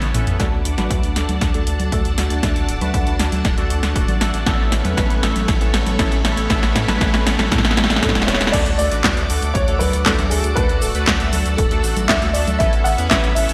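A punchy, up-front house drum kit drives this danceable, romantic italo disco excerpt, its snare, handclaps, congas, cabasa, hi-hat, toms and crash carrying gated reverb over a layered electronic kick, while a round, deep analog bass with tube saturation sits beneath. A glossy, retro chorused polysynth plays stabs through digital delay and a filter sweep, and a lush, vintage string machine holds sustained chords in the background as the harmony moves between D and Aadd9. At 8.0 s a dark, worn baby grand piano takes the melody, its boxy, intimate tone and audible action noise set in shimmer reverb within a bright 1980s-style digital mix.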